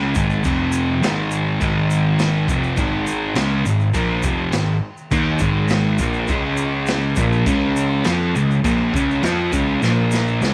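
A straight 4/4 pulse at 102 BPM drives this gritty, raw garage rock excerpt cut from a longer piece, where an up-front, double-tracked fuzz guitar riff with distortion plays over a growly, overdriven picked electric bass sitting in the background, a grainy egg shaker, and a boomy, saturated garage drum kit with medium-tuned snare, kick and crash in a pumping small room, all under light studio reverb, moving through F5, Ab5, Db5 and Bb5 chords before a drum fill at 9.8 seconds.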